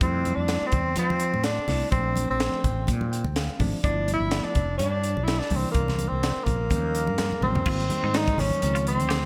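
Riding a 126 BPM groove in 4/4 with a 16th-note swing, this short cut from a longer electric jazz fusion piece in F major feels soaring and funky, moving through chords from Fmaj9 and Bbmaj9 to G13, C7 and Eb9 before shifting to Abmaj9 and Dbmaj9 at 7.7 seconds. A breathy, mellow tenor saxophone carries the melody up front with light vibrato and scooped notes, its jazz-style solo voice sounding distant and roomy, while a growly fretless electric bass, bright and amped, anchors the low end. The crisp fusion drum kit is gritty and saturated, with a high-tuned snare, tight kick, bright cymbals and toms, a pumping room sound and gated reverb, and it plays a fill just before the change. A bell-like tine electric piano sits in the background with clean accompaniment and a brief fill around 2.9 seconds, and very quiet, warm, medium-tuned congas with a thick skin add percussion. In the final stretch a twangy, compressed clean electric guitar enters with picked stabs drenched in lush chorus, all framed by the bright, 1980s-style digital sheen and light small-room ambience.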